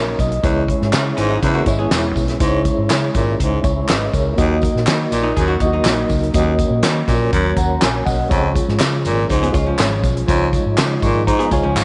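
A straight 4/4 groove at 122 BPM drives this uplifting 1960s-style soul snippet, with a punchy-kicked, fat-snared country drum kit and round, foam-muted fingered electric bass underpinning a reedy electric piano with fast tremolo and light overdrive, a background tonewheel organ with key click, chorus vibrato and slow rotary speaker, a dark, hollow-body archtop guitar riff that drops out at 6.4 seconds and returns at 9.4 seconds, distant tambourine and group handclaps, and a raspy, gritty baritone saxophone riff out front, all moving from C#m to D#m to C# before an electric piano fill at 10.8 seconds, under light reverb.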